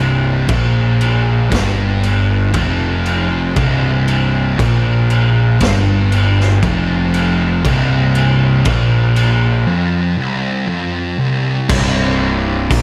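The raw garage drum kit stands out most, sitting up front with a boomy kick, a medium-tuned snare, gritty saturation and a rolled-off top as it comes in at 0.5 seconds with crash, hi-hat, kick and snare. This is a sludgy, heavy stretch of stoner and doom metal, cut from a longer piece and moving at a crawling 59 BPM in a straight 4/4. Two thick fuzz guitars play a low distorted riff from the start, one warm and one dark, both picked and set in the background. A fuzz picked electric bass holds down the low end with an overdriven, growly tone, heard both direct and through an amp. A break arrives at 9.7 seconds before a brief closing section begins at 11.7 seconds, all of it dry with little reverb around the parts.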